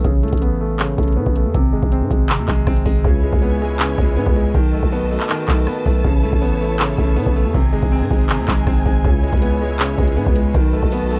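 A clear, up-front grand piano under a filter sweep opens this melancholic, brooding half-time trap excerpt at 160 BPM in C# minor, joined from the start by a growling, buzzy 808-style bass and a booming, dry analog drum machine with a deep kick, handclaps, rim clicks and metallic hi-hats that drop out from 3.0 to 9.0 seconds, while a dark, lush symphonic string section enters at 3.0 seconds with bowed, vibrato-rich sustained chords over a cycling Aadd9, G#, C#m7, B7 progression in a close, dark-toned mix.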